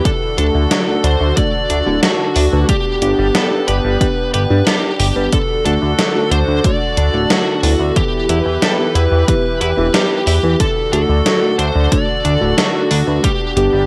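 Cassette-hued home-recording haze with light digital ambience frames this moody, nostalgic synthwave excerpt at 91 BPM, where a distorted, compressed fuzz lead guitar sings the melody over a glossy, pulse-width-modulated chorused synth bass, a punchy overdriven electronic kick, and a gated 80s digital drum machine's hi-hat and gated-reverb snare, while a smooth, detuned warm analog pad pumps sustained chords, a dark, dreamy FM electric piano with soft pad layer adds tremolo-shaded stabs, and a shining clean electric guitar picks a riff in the background across a D, G, D, Em progression.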